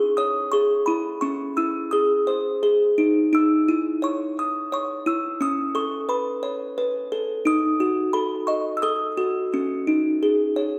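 A lone music box, delicate and tinkling with an airy, up-front sound and a touch of delay, plays a dreamy, wistful lullaby in a gentle 3/4 lilt, moving through minor and add9 chords toward a suspended close at 9.5 seconds, all soaked in a lush hall reverb in this brief excerpt cut from a longer children's piece.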